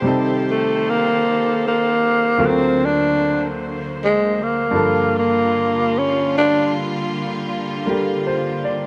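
Tender and romantic, this brief jazz ballad excerpt drifts at a slow 51 BPM with a gentle swing, as a clear concert grand piano with deep bass lays down accompaniment over sustained, softly bowed chamber strings, played sul tasto with light vibrato, moving through Am7b5, D7alt and Gm7. Up front, a growling tenor saxophone carries the melody from 0.5 to 6.7 seconds, its breathy subtone, raspy grit and scooped notes touched by a slapback echo. The sound is dry, with little reverb and an open-air quality.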